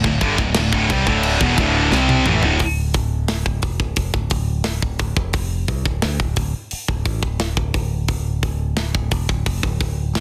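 A straight 4/4 pulse at 88 BPM drives this dark, relentless heavy metal fragment in D minor, cut from a longer piece. Three distorted guitars open on a D5 power-chord riff: one high-gain guitar sits up front, a second stays in the background, and a double-tracked, compressed fuzz guitar adds a buzzing layer behind them. A drum fill from 1.9 to 2.6 seconds closes this opening, and the guitars drop out at 2.6 seconds. A growly, direct electric bass and a tight acoustic kit carry on together until 10.2 seconds. The kit has a tight kick, a medium-tuned snare, bright cymbals and toms, with soft clipping on the kick and snare. The dry room and dense, heavily limited master keep the sound close and compact.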